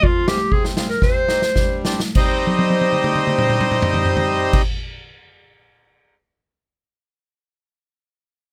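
Klezmer in C minor and 2/4, festive yet soulful, slowing down at first within a 95-126 BPM range. A clear, distant, classical-style clarinet carries the solo melody over a reedy, full, mid-forward accordion, while an airy, polished street-band drum kit with a boomy kick, medium-tuned snare, toms and dark crash cymbal plays fills from 1.0 s and carries on alone after the clarinet and accordion stop at 4.6 s, in a dry mix cut from a longer piece.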